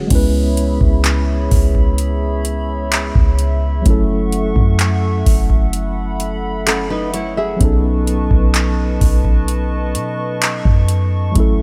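A booming analog drum machine sits up front with a deep kick, metallic hi-hats, handclaps and crash cymbal, driving this sensual, late-night contemporary R&B excerpt at a slow 64 BPM in 4/4. A clean, deep 808-style bass with fast-attack, decaying sine tones anchors the C#m7, F#m7 and B9 changes beneath a mellow tine electric piano and a hollow, flute-like pad with slow attack and chorus, all set in digital ambience. At 6.7 seconds a dark, fingerpicked nylon-string guitar steps forward with a brief arpeggio that ends by 7.8 seconds.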